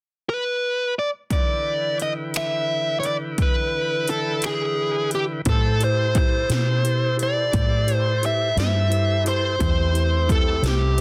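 A dark, smooth overdriven lead guitar carries the melody in this soulful, brooding slow blues in 12/8, entering alone at 0.3 seconds with picked, up-front lines. At 1.3 seconds the harmony settles on a minor seventh chord as a full, thick tonewheel organ arrives with lightly overdriven sustained chords, its slow rotary speaker adding a gentle vibrato. Punchy 80s electronic pad drums join at the same moment, pairing an analog kick and a gated snare with metallic hi-hats and finger snaps, all overdriven and re-recorded in a large room. At 5.5 seconds the chord shifts and two more parts come in: a round, foam-muted fingered electric bass sitting dark and punchy up front, and a worn, slightly out-of-tune tine electric piano played through its built-in speakers, tucked in the background. The sound is dry and close, with a dense, heavily limited modern master, and this short excerpt is cut from a longer piece.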